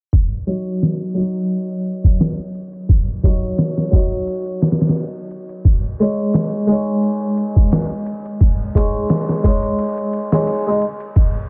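This melancholic, dark trip hop excerpt opens with a gritty, pitched-down sampler-style drum kit at 0.1 seconds: a thumpy kick, a medium-tuned snare and ride cymbal, compressed and tape-warm, sitting up front with studio reverb at a slow 87 BPM in 4/4 with a light swing on the sixteenths. A Flemish-style harpsichord with two sets of strings joins at 0.5 seconds as accompaniment, its plucked, full tone sitting mid-forward and up front, ranging from Gb3 to Eb5. The harpsichord is treated with harmonic tremolo, tape echo and a low-pass filter, and a filter sweep runs across it for the whole passage. The harmony rests on Ebm7 before moving to Dbsus2 at 5.7 seconds, keeping the piece in E-flat minor with tuning slightly above standard. The mix has light reverb and a dense, heavily limited modern master with a low-pass filter, and the fragment is cut from a longer piece, ending at 11.5 seconds.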